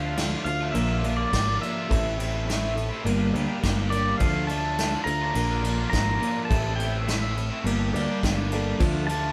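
Heard as a band playing live in a stone room with moderate reverb, this dusty, reflective folk rock and heartland rock excerpt in D minor moves at 104 BPM over a repeating Dm–Bb–Am–Gm cycle, with a twangy, fingerpicked pedal steel carrying the melody in slide-laden volume swells above a boxy, fresh-stringed plugged-in acoustic archtop, a double-tracked overdriven semi-hollow guitar riff, growly, punchy picked electric bass and a brushed drum kit with dark cymbals, while a woody, slightly detuned upright piano slips in quietly at 8.0 seconds.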